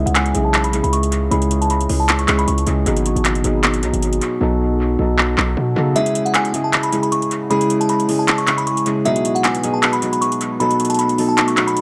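An echo-heavy, lightly reverberant mix opens this eerie, hard-hitting half-time trap fragment, where a warm, up-front concert grand piano plays low accompaniment under a glassy, crystalline FM synth bell melody, both drenched in dub echo while a filter sweep runs through the first six seconds. An aggressive, distorted 808-style bass and an overdriven trap kit with metallic hi-hats, handclaps and gritty 12-bit sampler texture hit hard up front until the bass drops out at 6.0 seconds. After that, the kick falls silent and a mellow, warbling tape-like pad with detuned, nostalgic lo-fi chords drifts in at 6.5 seconds from the background.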